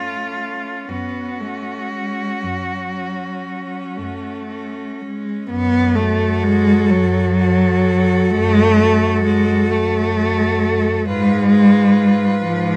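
Yearning and melancholic, this rubato classical fragment in 12/8 sets four bowed cellos, each played with vibrato, in a lightly reverberant room: a rich, focused melody cello and a clear second line sing above a warm, close, up-front accompaniment cello with expressive portamento, while a smooth, even bass cello anchors the harmony until it shifts to a new chord near 11.1 seconds.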